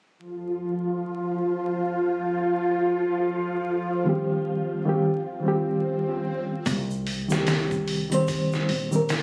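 Melancholic and dark, this short trip hop passage, cut from a longer piece, moves at an unhurried, swung pace with vinyl crackle, light reverb and the close, compressed sound of a phone recording in a studio room. Phased, chorused string machine cellos open with full, vintage sawtooth chords that swell in slowly and sustain over a sub octave, and at 4.0 seconds a reedy, worn electric piano joins, slightly out of tune, lightly overdriven and crunchy with old sampler grit, tremolo and tape echo, as if heard through built-in speakers. An electronic swell rises beneath them from 5.3 seconds until the strings stop at 6.7 seconds. At that moment the groove arrives: a pitched-down, gritty sampler-style drum kit sits up front with a thumpy kick, medium-tuned snare and hi-hat, while a woody, growly pizzicato upright bass plays low beneath it. Egg shaker, group handclap and triangle sit faintly in the background, adding a small-room acoustic texture as the electric piano carries on to the close.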